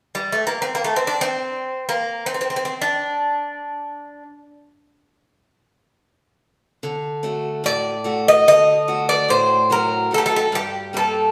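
Dark and wistful, this Greek folk piece unfolds in free time in D phrygian dominant, opening with a picked bouzouki alone from 0.1 seconds, its metallic double strings, some doubled at the octave, carrying the melody up front. At 6.8 seconds a bright, boxy picked archtop guitar joins in accompaniment, with audible finger squeak, as the harmony settles on D before moving to G minor at 10.5 seconds. The band plays live together in a stone room whose wet reverb gives the sound a lingering tail, and the piece is cut from a longer performance.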